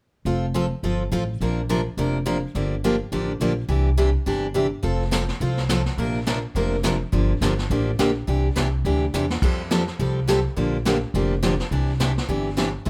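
A swinging 209 BPM western swing groove in F major carries this cheerful country excerpt, with a bright, full-bodied picked acoustic guitar, finger squeak and all, picking through chords like Bbadd9, Gm7 and Cadd9 over a woody, thumpy pizzicato upright bass from 0.3 seconds, before a vintage brush kit with dark cymbals and a punchy kick joins at 4.8 seconds and drops a fill at 9.1 seconds, all in a studio room with light reverb.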